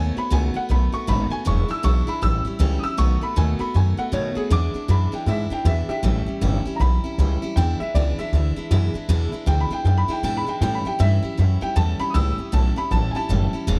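A thumpy, woody upright bass sits up front in this upbeat, retro rockabilly clip, its gut strings plucked pizzicato and running low beneath the other parts at 157 BPM in a swung 4/4. A worn, slightly detuned upright piano carries the melody with short sustain and a touch of tape echo, taking over as the solo voice from 4.5 seconds until the clip ends at 13.8 seconds. A picked steel-string acoustic guitar with a full-bodied dreadnought tone fills in the accompaniment, sitting lower in the mix alongside the piano. The harmony moves through dominant sevenths, B7, E7 and A7, giving the tune a bluesy drive. The room is dry, with little reverb, so the trio sounds close and immediate in this warm excerpt cut from a longer piece.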